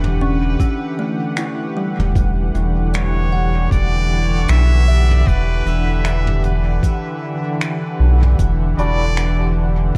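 This short cut from a longer ambient dub piece opens on an Em9 chord held by a smooth, detuned sawtooth pad with chorus and tremolo. A woody kalimba rings out bright arpeggios through tape echo in the background, and a round, deep analog bass sits up front. Soft brushes on a small-room acoustic kit add finger snaps, hi-hat and toms trailed by dub echo, and a muffled, thumpy sampled kick joins at 0.6 seconds. At a relaxed 77 BPM in 4/4 with a light sixteenth-note swing, the mood is spacious and meditative, settled in E dorian and bathed in generous studio reverb. A trumpet with a straight mute enters at 2.9 seconds, carrying a nasal, brilliant solo melody with classical-style vibrato through tape echo. Near the close, at 8.8 seconds, a reedy, breathy melodica adds brief stabs with dub echo from the background.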